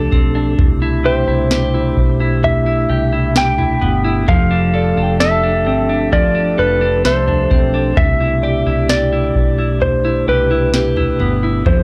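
Dreamy and floating, this slow dream pop passage in C major moves at 65 BPM, drifting between F6 and Cmaj7 as a flute-like tonewheel organ holds sustained chords through a fast rotary speaker, a dark, picked clean electric guitar spins arpeggios through lush chorus and analog delay, and a round, foam-muted fingered bass adds punch with transformer saturation. A booming analog drum machine sets a deep kick against a crisp snare and toms, while from 1.1 seconds a bright, twangy lap steel slide melody sits up front with its own analog delay, and a very quiet warbling FM synth bell adds a pure, decaying texture above. The dry, gritty hardware recording has little reverb, and the passage is cut from a longer piece.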